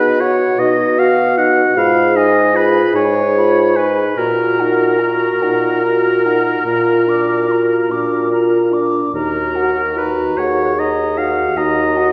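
Heard from further back in a concert hall, this recording carries a wet reverb with a 1.9-second decay that softens the edges of a classical wind quintet. It is a slow, romantic movement in Eb minor and 12/8, moving at roughly 47-52 beats per minute in dotted quarters with a rubato, yearning and melancholic feel, cut from a longer piece and lasting 12.1 seconds. A silver concert flute sings the melody high above, its airy, straight tone and crisp attack sounding distant. Just beneath, an up-front oboe with light vibrato and a smooth top carries the second line. A present, mellow French horn and a warm clarinet set further in the background fill out the accompaniment, while an up-front bassoon, also touched with light vibrato, anchors the bass. All five parts play together from start to finish as the harmony passes from B through Fm7b5/Ab, Ebm/Bb and Bb before settling on Ebm at 9.1 seconds.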